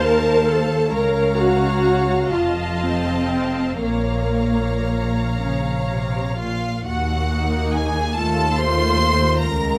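Yearning and melancholic, this excerpt from a slow romantic movement for string orchestra unfolds in six-eight with a flexible, rubato pulse. A close, vibrato-laden violin section carries the high melody over a more distant second violin line, while a lush, up-front viola section supplies the most prominent accompaniment, and a warm, expressive cello section and a smooth, bowed double bass section anchor the low end. A new section begins at 6.9 s, the violas fall away at 9.4 s, and moderate recital-hall reverb surrounds the whole ensemble.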